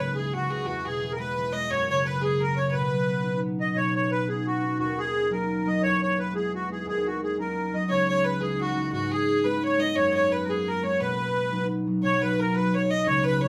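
Bright and lively, this Celtic folk jig in 6/8 moves at 116 BPM (counted in dotted quarters) in B major, and is cut from a longer piece. A reedy, sweet accordion with light tremolo tuning carries the melody up front throughout, while a single rich, biting bowed fiddle plays an earthy second line that drops out at 3.4 seconds and returns at 7.9 seconds. Underneath, an acoustic concert harp, also up front, supplies fingerpicked, ringing accompaniment, all set in a studio reverb.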